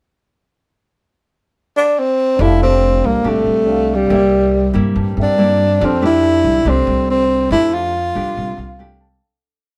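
Romantic and sophisticated, this short, complete bossa nova piece unfolds in a straight 4/4 feel within a small, moderately reverberant room where the band plays live together. A breathy tenor saxophone enters alone partway through the pickup bar at 1.8 s, dark and close-miked, with a whispered, intimate subtone, soft attacks, scooped notes and vibrato as it sings a motif-based melody up front. At 2.4 s the accompaniment enters over an F69 to C7 and back to F69 progression: a nylon-string guitar, fingerpicked in classical fashion, supplies thumb bass and syncopated plucked chords. A woody upright bass plays pizzicato dotted root-and-fifth lines, while a grand piano sits in the background with held drop2 chords. The music fades out toward the close, and the piano adds a brief fill at 8.4 s as it ends.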